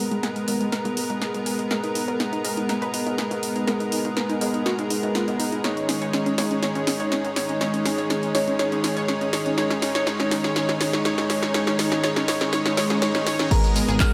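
Dreamy and driving, this progressive house passage in G# minor moves at 122 BPM in a straight 4/4, cut from a longer piece and spent almost entirely on a build-up over G#madd9 and C#sus2 chords. A thick, detuned unison pad holds sustained chords with chorus and sidechain pumping, while an up-front soft supersaw fires smooth, evolving stabs through a low-pass filter and delay, and a lush, detuned pluck sits in the background playing arpeggios with chorus and delay, both synths under a filter sweep throughout. A funky, plucky analog bass stays very quiet underneath, and a tape-warm house kit enters at 0.1 seconds with a punchy snare, handclaps, hi-hat and crash cymbal running a drum fill across the build. Near the end a faint electronic swell rises from 12.9 seconds, and at 13.5 seconds a punchy electronic kick enters alongside a glassy, crystalline FM bell melody, a grainy shekere and a barely audible reversed granular texture. 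A lush hall reverb drenches the sound.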